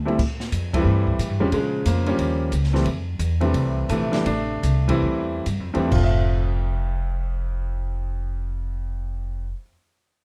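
This jazz piano trio clip, cut from a longer piece, has a warm, swinging mood and a 4/4 feel with swung eighth notes. It opens on a drum fill from an open acoustic kit with dark cymbals, a medium-tuned snare and a boomy kick, sitting in a studio room somewhat behind the other two players. Up front, a woody, growly pizzicato upright bass with steel strings anchors the low end, while a clear, natural grand piano with short sustain carries the melody over chords moving from Am7 through Bbm7 and Eb9 to Fmaj7. The trio hits band accents at 0.7 and 4.8 seconds and slows down during the opening section, and the drums drop out at 6.1 seconds, leaving bass and piano to carry the second section. Light reverb and a dark, warm production round out the sound.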